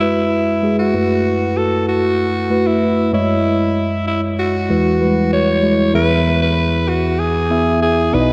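A raspy, gritty alto saxophone carries a punchy, scooped pop-style solo with delay, sitting up front over a mellow tine electric piano with subtle chorus that plays clean, direct accompaniment, both heard together from the start. This short excerpt of a nostalgic yet urgent pop piece moves at 96 BPM in a straight 4/4, tuned to A4 = 441 Hz, with harmony drifting through add9 and sus4 colours before a new section settles onto E at 5.9 seconds. The whole mix is soaked in a lush, dreamy hall reverb with a long 2.7-second tail.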